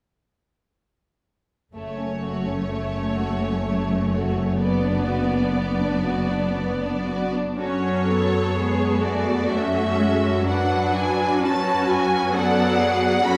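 A lush viola section sits up front in this elegiac, yearning excerpt from a slow romantic movement for string orchestra, its even, vibrato-laden accompaniment the most present voice in the blend. Above it, a clear, intense violin section carries the melody high in its range from 1.8 seconds. A second violin section, smooth and distant, shares the inner texture with a second line. Cellos with a focused, smooth top and a rich double bass section anchor the bass from 1.7 seconds. The music moves in a rubato 3/4 at roughly 55-66 BPM in F# minor, alternating F#m and Bm over an F# bass across two short sections, the second beginning at 7.6 seconds. A wet scoring-stage reverb places the ensemble further back in the room, lending a spacious, mournful glow.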